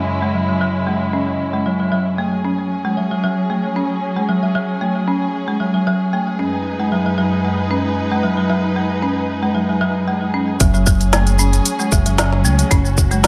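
A lightly swung 4/4 pulse at 114 BPM drives this warm, hypnotic organic downtempo passage in F# minor, cut from a longer piece. A dark, bowed chamber string ensemble holds sustained chords with sidechain pumping. From 0.2 seconds a rustic, hardwood-bar marimba played with medium hard mallets adds arpeggios through a low-pass filter and delay, with a filter sweep running across it until 10.6 seconds. At that point a tight, tape-tinged electronic kick recorded in a large room, an overdriven electronic kit with a woody snare, smooth hats and shaker, and an up-front sawtooth synth bass with ring modulation, vibrato and sidechain pumping all enter, set in a moderate recital hall reverb.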